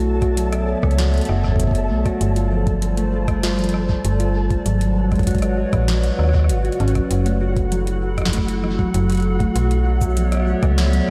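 Cerebral and glitchy, this brief IDM passage moves at 98 BPM in a straight 4/4, tuned slightly low to A4 = 436 Hz. A warbling, nostalgic pad with a lo-fi, detuned square-and-triangle tone sustains chords under chorus and its own reverb, while a flickering granular texture glimmers faintly above it. Up front sits a digital FM bass with a fast, decaying attack, and from 0.2 seconds a soft, harp-like synth pluck rings out arpeggios through chorus, delay and a filter sweep. The rhythm comes from a booming analog drum machine with a tonal snare, metallic hats, cabasa, rim click and toms washed in diffuse ambient delay, joined by a gritty, thumpy, pitched-up kick that sounds re-recorded in a large room. The harmony drifts through Bm11, G9sus4, G#m11 and F#m7 before returning to Bm11, and the dreamy mix is soaked in a lush hall reverb.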